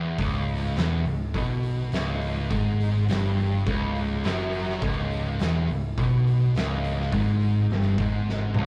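A double-tracked, up-front fuzz guitar riff in C# minor leads this ominous, heavy stoner and doom metal excerpt at 104 BPM, joined at 0.2 seconds by a dark, round overdriven picked bass and an oversized low-tuned drum kit with a boomy kick, fat snare and pumping big-room sound that closes on a fill at 8.3 seconds, all captured as a rough rehearsal-room recording with tube saturation and cassette tape coloring.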